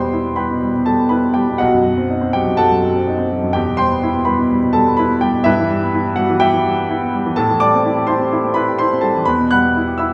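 A warm, present grand piano with long sustain sits up front in this passionate, stormy excerpt of a virtuoso classical piano study in E minor, played solo at 125 BPM in 4/4 with rubato across a span from B1 to F#6, moving through E minor, B7b9, Em/G and Am7 harmonies inside the wet, 1.6-second reverb of a recital hall.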